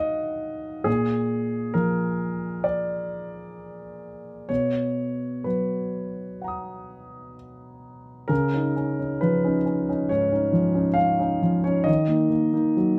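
Flexible rubato timing around 62-68 BPM in 4/4 gives this short passage of neoclassical minimalist piano a wistful, reflective feel. A solo concert grand, warm, intimate and up front, spans deep bass to high treble notes with long sustain and audible action noise, its harmony moving from Ebm through Bb7, Bmaj7 and Dbadd9 before returning to Ebm at 11.9 seconds. Moderate studio reverb gives the natural piano tone a gentle sense of space.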